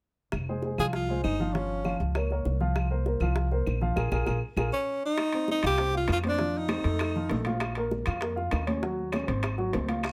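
A driving, straight 4/4 groove from soft-handed, round bongos and distant, woody claves sits behind a thumpy pizzicato upright bass in this sultry Afro-Cuban jazz excerpt, with a natural-sounding baby grand piano accompanying up front. A clear tenor saxophone with vibrato and a soft attack carries the melody in two passages, and after a drum fill and band accent, high-tuned congas and ringing metal-shell timbales with a vintage tone join at 5.2 seconds. A raspy guiro appears only at 10.0 seconds, closing the lightly reverberant mix.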